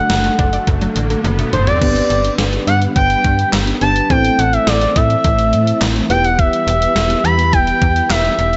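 Bright and nostalgic, this synth-pop excerpt in G major at 105 BPM features a smooth sawtooth lead with vibrato and portamento that carries the melody up front from the very start, over muted, felt-like synth keys and sustained organ-like ensemble strings. A background riser and round, detuned analog pluck arpeggios open the piece and fall away at 1.8 seconds as a drum fill leads into the main section. Underneath, a snappy slap-like FM bass with a metallic attack and a thumpy, tape-toned 80s drum machine, whose snare rings with gated reverb, drive things along, all set in a light reverb.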